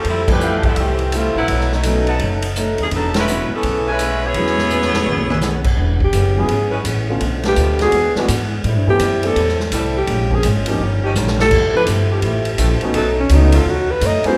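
A wet recital-hall reverb gives this energetic, brassy big band swing excerpt a natural concert-hall glow as it moves at 168 BPM in E major, with woody, thumpy upright bass pizzicato, a punchy swinging drum kit, a polished grand piano and a boxy, picked ladder-braced acoustic guitar in the background carrying it throughout. A bright, tight saxophone section leads up front with vibrato while a clear trumpet section adds soft-attack stabs behind it, with band accents at 0.2 and 3.1 seconds and a drum fill closing the opening passage. From 5.8 seconds a breathy, close-miked alto saxophone takes the solo over smooth-topped sustained saxophone-section chords, with another short drum fill arriving partway through.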